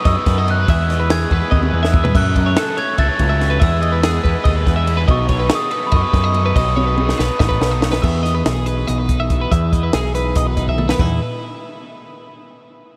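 A growling, overdriven electric bass sits up front in this intricate, playful math rock and midwest emo fragment, moving through a low range at 286 BPM in a straight 7/8 in E major. Above it, a bright, clean, compressed twelve-string electric guitar picks delayed arpeggios throughout, while a glockenspiel struck with rubber mallets carries the melody in a mellow, bell-like, close-miked voice that also trails a delay. A double-tracked overdriven electric guitar plays a riff in the background until 8.0 seconds, when a warm, clean twelve-string guitar takes over the accompaniment. A compact cocktail drum kit keeps the playing dry, with a high-tuned snare, punchy kick and dark cymbals, and it rolls through several fills along the way. The chords circle through B7, Emaj7 and F#m7 before settling on Emaj7, all inside a light reverb.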